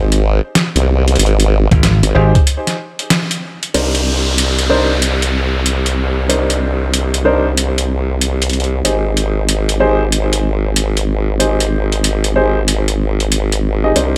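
Playful and gritty, this glitch hop excerpt moves at 94 BPM in 4/4 with a swung sixteenth-note feel, built on an up-front formant-sweep wobble bass that blends sawtooth and sine tones through chorus and tube saturation, alongside a pitched-down, tape-kissed sampler drum kit of hi-hat and medium-tuned snare. Around 1.7 seconds a punchy, glassy slap bass and a thumpy electronic kick land briefly, while from 2.1 seconds a baby grand piano plays short, natural stabs with sidechain pumping and digital delay. Over an opening Ab chord, a break and band accent lead into the second section at 3.7 seconds, where an electronic downlifter sweeps beneath harmony moving from Cm9 to Abmaj7, all set in a light digital ambience.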